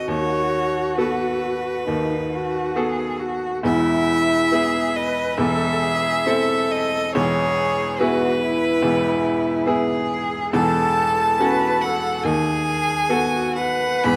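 A rich, smooth violin carries the melody up front, its bowed line sung with vibrato and kept even in tone, high in its register. This is a lyrical, warm slow movement for piano trio in E major, cut from a longer piece and moving at about 69 BPM in 4/4 with a freely breathing rubato. Beneath it, a clear, bowed cello sits farther back, adding a second line with vibrato and an equally smooth, steady sound. A bright baby grand piano, close and present, supplies the accompaniment from the deep bass upward, its brilliant, slightly worn tone natural and short in sustain. The harmony moves from B7/D# to E, touches Am/E and F#m7/E, and returns to B7/D# near 12.2 seconds. Close, detailed microphones capture the trio in a concert hall with moderate reverb.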